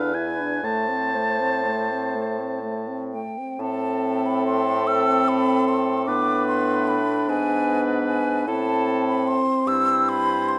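A wind quintet opens together on an E7 chord that settles into A minor: an airy, hollow flute carries the yearning melody above a smooth-topped oboe with light vibrato, while a clear, soft-edged clarinet sits in the background and a present French horn and roomy bassoon fill out the accompaniment and bass. This elegiac, slow romantic movement in 6/8 drifts with rubato at roughly 40-51 dotted-quarter beats per minute, tuned slightly high to A4 = 444 Hz. A second section arrives at 3.6 seconds, darkening briefly to a G# diminished chord before returning to A minor, all within a moderate recital hall reverb in this passage cut from a longer piece.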